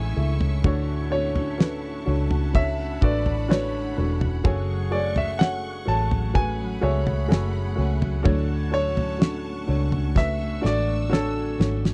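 A dry, close 1970s-style studio sound frames this tender, emotional pop ballad at 63 BPM, moving through Amaj7, Dmaj7 and F#madd9 in a short cut from a longer piece. A clear, polished concert grand carries the melody with tape echo over a dark, woody upright piano with audible action noise, lush bowed strings with vibrato, and a very quiet picked steel-string guitar with finger squeak playing arpeggios. A round, punchy foam-muted electric bass and a damped 70s drum kit with a fat snare and tight kick sit up front, the drums entering at 0.4 s and closing with a fill at 10.2 s.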